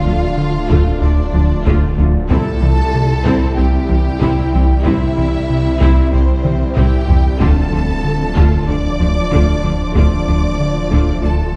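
Brooding and futuristic, this cut from a longer hybrid orchestral and electronic film score moves at 94 BPM in D minor, shifting from Dm to C and back to Dm at 7.4 seconds. A lush, distant studio violin section carries the melody over a smooth-topped second violin line, a background viola section, clear French horn chords, a cloudy granular pad and a mellow, tine-like synth pluck playing arpeggios. Underneath, a thick, menacing detuned saw bass and a rubbery, hollow square bass riff fill out the low end beside very quiet cello and double bass sections, while very quiet, heavy-stick taiko drums enter at 0.7 seconds and play a fill from 6.4 seconds, all within a dark production on a moderate scoring-stage reverb.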